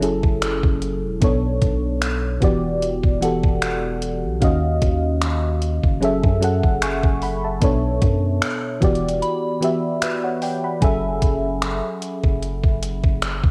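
A lightly swung sixteenth-note groove from a detuned 8-bit drum machine, with a thumpy kick, finger snaps and hi-hat that sound re-recorded in a large room, drives this moody, late-night contemporary R&B cut, where a round, warbling FM electric piano with chorus and cassette-tape grit carries minor seventh chords up front over a deep, sine-like 808 bass, while a pure, gentle synth bell treated with chorus, phaser and tape echo drifts in the background from 3.2 seconds, and a break at 9.2 seconds leads to a closing F#m9.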